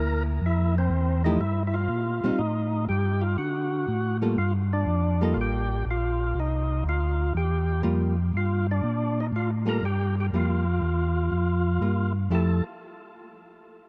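A percussive tonewheel organ carries the melody with a thick, lightly overdriven tone, its key click and third-harmonic percussion turning slowly through a rotary speaker, while a mellow, round organ with chorus vibrato holds down the bass up front. A clean, picked hollow-body electric guitar adds dark accompaniment underneath, all three parts playing throughout this soulful, swinging jazz fragment cut from a longer piece. Light reverb and a dusky production frame chords moving from Fmaj7sus2 through Gm9 and C7sus4 before settling on Fmaj9 at 12.3 seconds.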